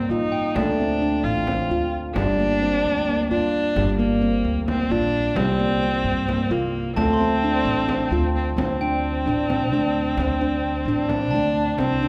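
A rich, smooth viola with vibrato sings the second line up front over ringing handpan arpeggios struck with sharp finger strokes, woody pizzicato upright bass and a very quiet, deep frame drum in this pensive, hypnotic contemporary chamber piece in 7/8 at 262 eighth-note beats per minute, while a bright, sparkling glockenspiel flickers in the background at 0.3 seconds and returns at 7.0 seconds, all bathed in a wet concert-hall reverb.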